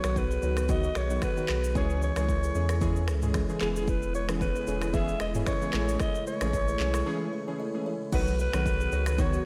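A breathy, raspy alto saxophone leads this joyful, sunny afrobeats excerpt, carrying a pop-style solo melody with vibrato and a smooth top, trailed by a diffuse ambient delay. Underneath, analog keys with a detuned sawtooth tone, chorus and a filter sweep accompany the chords of B, C#m, E6 and Amaj7 in B mixolydian, while an airy, nasal pad with a slow attack and long release holds soft sustained chords in the background. A buzzing, woody kalimba plays a ringing riff further back, carried by its own ambient delay, and a round sine sub bass anchors the low end. The electronic afro-pop drum kit sits up front at 113 BPM in 4/4 with a lightly swung sixteenth feel, its deep kick joined by finger snaps, handclaps, rim clicks, shaker, toms and crash cymbal. A break arrives at 7.1 seconds before a new section begins at 8.1 seconds back on B, and a lush hall reverb gives the mix a dreamy glow.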